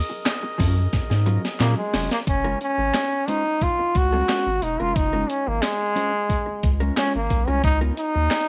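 Set in a light reverb, this short cut from a longer funk piece has a hypnotic, funky mood and a straight 4/4 feel. A gritty, compressed breakbeat-style kit sits up front with a thumpy kick, a high-tuned snare, hi-hat and handclaps, joined at the start by a very quiet, hollow group handclap and a drum fill that runs into the second section at 2.3 seconds. A round, deep analog bass with a fast attack and sustained, dark tone anchors the low end, while a clean, fingered electric guitar coated in lush chorus plays accompaniment over chords moving from Ebm11 to a rootless Gbmaj9 and then Db13. A mellow, distant horn section supplies a tight, roomy second line at the opening before giving way at 1.9 seconds. From 1.6 seconds a brilliant, vintage-toned solo trombone takes the melody up front, its soft attack and light vibrato carrying through to the end.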